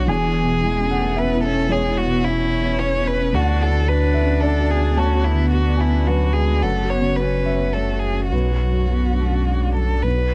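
A fragile, melancholic stretch of neoclassical piano and strings opens with every part sounding together: a felt-muted upright piano, a violin, a cello, a granular pad and a sub bass. The piano's accompaniment is soft, dark and intimate, its thick felt giving a mellow, muted tone, with the action noise of the instrument clearly audible. Up front, a single bowed violin carries the melody with a warm, expressive tone, vibrato, soft attacks and portamento, touched by tape echo, while a solo cello sits in the background with a rich, focused second line and its own vibrato. Beneath them, a round, deep sub bass with a fast attack holds the low end prominently, and a very quiet, cloudy pad of detuned, blurred chords evolves with a slow attack, long release and its own built-in reverb. The playing moves in a rubato 3/4 through E6, Bm/D, F#m and Bm harmonies, heard in a dry, close recording with a 1970s studio character. 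The cello drops out at 10.0 seconds, just before the others end at 10.3 seconds, as this fragment of a longer piece cuts off.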